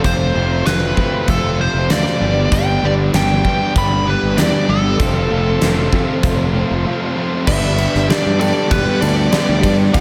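A big arena sound with concert-hall reverb frames this driving, swaggering classic rock excerpt at 97 BPM, where an overdriven guitar riff with spring reverb and slapback echo, a very quiet sludgy distorted guitar, a growling fingered bass and a huge drum kit with a fat snare and punchy kick back a nasal lead guitar through a parked wah, while a very quiet tonewheel organ on slow rotary enters at 2.5 seconds, and after a break at 6.9 seconds, a lightly driven second lead and a lo-fi double-tracked garage guitar join at 7.5 seconds as the chords move from F and G to E minor.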